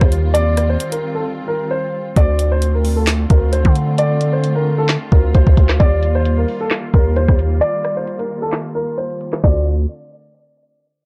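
A brooding, eerie half-time trap hip hop excerpt at 132 BPM in D phrygian opens with a mellow dark concert grand piano melody softened by a low-pass filter and tape echo, over veiled con sordino strings holding distant bowed chords, a growling, buzzy 808-style bass and an up-front electronic kit of knocking kick, woody snare, handclaps, rim click and metallic hi-hat, moving between Ebadd9 and Dm7 in small room ambience, with breaks at 1.3 and 7.6 seconds and a filter sweep beginning at 2.2 seconds.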